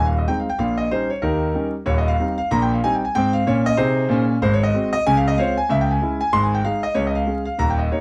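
Swinging and playful, this short stride piano passage comes from a longer jazz piece and bounces along with a lilting swing feel. A single concert grand plays solo for the full 8.0 seconds, ranging from a deep, resonant low register up into bright upper notes. The instrument sits up front with a clear, open tone and long sustain that lets its chords ring. The harmony moves through a cheerful cycle of major, seventh and sixth chords, with a brief turn to a minor colour before settling again. Close, detailed miking and a moderate club reverb give the piano presence and a sense of room, while vinyl crackle adds a vintage patina.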